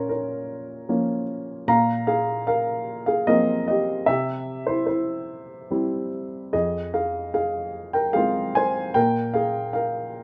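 In a rubato 3/4 at about 75 BPM, this dark, wistful classical excerpt features a lone upright piano, woody and up front in light reverb, spanning F2 to Bb5 as its lyrical line moves through Bbm, Bbsus2, C and Fm before settling on a bare Bb5 at 9.0 seconds.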